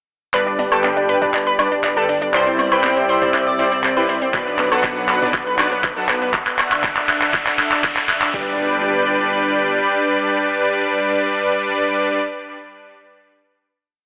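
A straight 4/4 pulse at 120 BPM drives this expansive, euphoric progressive house piece in G major, built from pop-kit hats, shaker, woodblock, claps and crash, overdriven and up front with a small-room sheen, plus background electronic congas and toms in a tribal loop. A knocking four-on-the-floor electronic kick arrives at 4.3 s under a drum fill and filter sweeps during the build, while a dark, rumbling detuned saw bass holds the roots. A lush pad sustains chords through G, Cadd9, Bm and Dadd9, joined by a round analog pluck riff in sixteenths with tape echo, smooth supersaw stabs in a dotted rhythm, a glassy drifting high texture, and faint risers and impacts, all washed in a lush hall and telephone-like tone before the final G chord rings from 8.3 s to 12.3 s.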